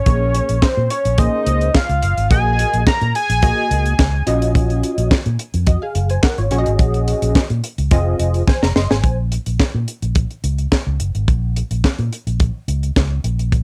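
Funky and danceable, this cut from a longer early-eighties boogie funk track rides a straight 107 BPM groove in Bb minor, moving from Bbm9 through Gb69/Bb, Ebm9/Bb, Ab7sus4 and Fm7 to Bbm7 before settling on Bbm. A fat, detuned sawtooth lead with a sub octave and vibrato carries the melody up front until 4.2 seconds, over a dark, chorused polysynth comp with a plucky filter and a moving notch that comps along until 9.2 seconds, both with a cassette-tape tint. Underneath, a bright, punchy fingered bass through an envelope filter and a dry, tight drum kit with a high-tuned snare, hi-hat and handclaps drive the whole way, with a drum fill at 8.5 seconds leading into a sparser bass-and-drums passage, all captured as a home cassette recording with little reverb.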